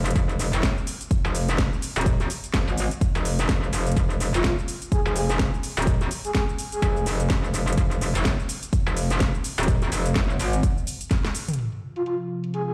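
A metallic, aggressive wobble bass sits up front in this gritty, bouncy bass house excerpt, its saturated FM tone pumping against the beat with chorus and tube grit as it holds low between Eb1 and Ab1. A punchy, layered electronic kick drives the 126 BPM groove in 4/4, with a swung 16th-note feel in F phrygian. A garage kit adds a cracking snare, shaker, toms and metallic hats, all dulled by low-pass filtering and given a tape-like warmth. At 4.3 seconds a soft, breathy flute-like synth lead enters with vibrato, delay and a sub-octave layer, singing briefly between F4 and Ab4 before returning near the close. A drum fill arrives at 11.1 seconds, and at 11.6 seconds a bright, detuned sawtooth pad swells in on an F5 chord while a filter sweeps across the drums. The whole mix rings through a big sound system in a bare stone room, giving it a cavernous, reverberant air.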